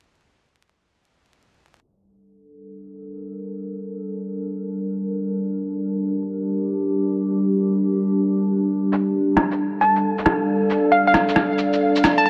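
Through vinyl crackle and a filter sweep, a warbling, detuned tape-like pad fades in on sustained G minor chords set in a moderate wash of vast reverb, opening this nocturnal, rainy future garage excerpt in free time; muffled, pitched-down shaker and rim click arrive at 8.9 seconds as the harmony moves to Dm/G, and a hollow, bouncy square pluck with chorus and digital delay traces a bright melody from 9.8 seconds.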